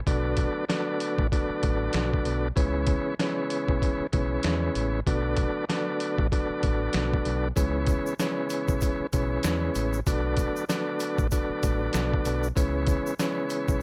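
A tonewheel organ sits up front in this reflective, gritty boom-bap hip-hop excerpt, its smooth tone carrying key click and the churn of a fast rotary speaker, then narrowed by high- and low-pass filtering and a cassette tape haze. The groove moves at 96 BPM in 4/4 with a 57% swing on the sixteenths, set in B dorian and alternating between Bm7 and C#m7 chords. A sampler-style drum kit supplies a thumpy kick, a medium-tuned snare and hi-hat, compressed and pitched down with vintage 12-bit grit and the character of a large room. Beneath it, a deep dub fingered electric bass stays dark, round and punchy, with a direct, amped sound. A grainy, bright tube shaker joins in the background at 7.6 seconds, adding a small-room acoustic sparkle to the otherwise dry mix.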